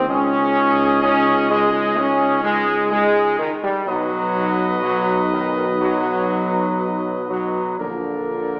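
In a slow, straight 4/4 at 59-64 BPM, this solemn, majestic classical fanfare, cut from a longer piece, sets a dark trumpet section with light vibrato on the melody over sustained chords from a roomy trombone section up front and a mellow French horn section in the background. A smooth-topped tuba holds the bass as the harmony moves from Dbsus2 to B at 3.9 seconds and settles on Bb at 7.8 seconds. The brass sits in a wet scoring-stage reverb with a small-speaker sound.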